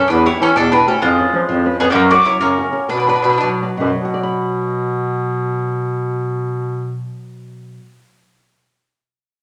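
Bathed in a wet, roomy studio reverb, this wistful, romantic Italian folk serenade in B minor and a lilting 6/8, cut from a longer piece, moves at 98-130 BPM and slows along the way, with a bright, up-front bowl-back mandolin picking the double-string melody over a second mandolin's mellower harmony line until both stop at 3.5 s, while a vintage, classical-style bass clarinet holds the low end up front until 7.2 s and a fingerpicked flamenco guitar, finger squeaks and all, carries the accompaniment through to 8.0 s.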